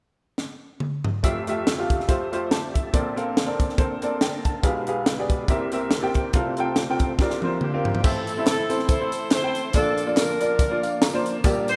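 A crisp, punchy fusion drum kit with a high-tuned snare opens this uplifting, swung gospel piece at 0.4 seconds with a fill. An up-front, woody, vintage-toned upright piano and a mellow, dark tonewheel organ with key click, chorus vibrato and fast rotary speaker, sitting in the background, set down hopeful extended chords. A smooth, jazz-style saxophone section carries the melody with light vibrato from 7.6 seconds, joined at 8.1 seconds by close, dry tambourine and group handclaps, all in a lush hall with the rough feel of a home demo.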